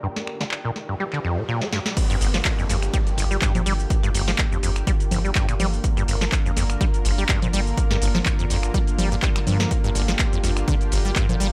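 Acid house at 124 BPM in G minor pentatonic, hypnotic and raw, this excerpt opens on a Gm7 chord with a lush, warbling unison pad under chorus and sidechain pumping, a squelchy, resonant sawtooth acid bass riff treated with analog chorus and delay, background risers and downlifters that stop at 5.8 s, and a faint, ethereal airy pad that ends at 1.5 s. A booming analog drum machine arrives at 0.2 s with crisp snare, metallic hats, congas, shaker, handclaps, finger snaps and crash, and after a drum fill the drop lands at 2.0 s with a punchy, tape-warm kick up front. A round, deep sine sub bass, tube-saturated and pumping, joins at 2.2 s, all in a dry mix.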